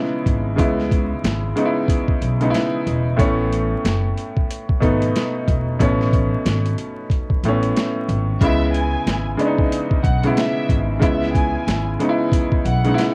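Boom-bap hip-hop with a gritty, moody cast, cut from a longer piece and riding a swung sixteenth-note feel in 4/4. A clear concert grand piano carries the accompaniment up front, its deep bass and short sustain filtered and dusted with cassette tape as it moves from C#m7 to Aadd9. Beneath it, a pizzicato upright bass with steel strings sounds woody and thumpy, while a compressed, pitched-down sampler-style drum kit pushes a thumpy kick, a high-tuned snare and hi-hat to the front through the same cassette grit. At 8.4 seconds, as the harmony returns to C#m7, a dark studio violin section enters quietly with the melody, bowed and lush, its vibrato and portamento softened by filtering, cassette tape and tape echo. The whole has the dry, close feel of a home cassette recording, laced with vinyl crackle.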